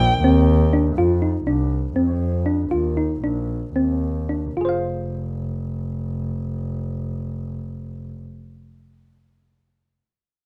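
Set in a straight 7/8 at 216-245 BPM counted in eighths, this contemporary chamber piece in F dorian feels restless yet hypnotic, and it slows down between 1.0 and 4.6 seconds. A dark violin, bowed sul tasto with vibrato and a woody, smooth top, carries its brief melody on G5 at the very start and stops at 0.7 seconds. Carrying the arpeggios throughout is an up-front, thumb-piano-like synth pluck, round and tine-like with a fast attack and decaying notes, its mellow FM tone touched by a noise layer, ring modulation and chorus. Beneath it, a single player on bowed double bass gives a rich, nasal, floating line from F1 to F2, close and up front, with a soft attack and an airy bow. The harmony moves from Bbadd9 through F5 and Eb5 to settle on Fm at 4.6 seconds. Moderate studio reverb and a dusky, warm production round out this brief fragment cut from a longer piece.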